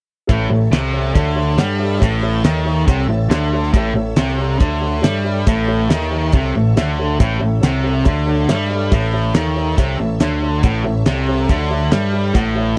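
Driving straight 4/4 at 139 BPM, this sunny classic rock excerpt in A major is anchored by an up-front damped 70s drum kit with a fat snare, tight kick and hi-hat, and a growling, overdriven picked bass, while two bright, overdriven guitars, one a cranked stack, play the low riff, a dark, woody, slightly detuned upright piano comps and adds a fill at 6.3 seconds, and a shimmering vintage string machine of violins holds soft-attack chords with ensemble chorus in the background, all in a dry, close 1970s-style studio sound.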